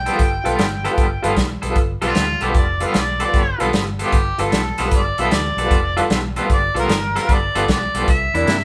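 Soulful and swaggering, this electric blues shuffle in G mixolydian swings at 152 BPM in 4/4, a short cut from a longer piece played live in one room with moderate studio reverb. An up-front, vintage harmonica with overdrive, light vibrato, tongue slaps and scooped notes carries the melody and breaks into a solo at 1.8 s, over a twangy, slightly broken-up electric guitar riff with tremolo, a round, foam-muted fingered electric bass, a woody, slightly detuned upright piano and an airy country drum kit with a punchy kick, snare and hi-hat. The harmony rests on G9 before shifting to C9 at 8.1 s.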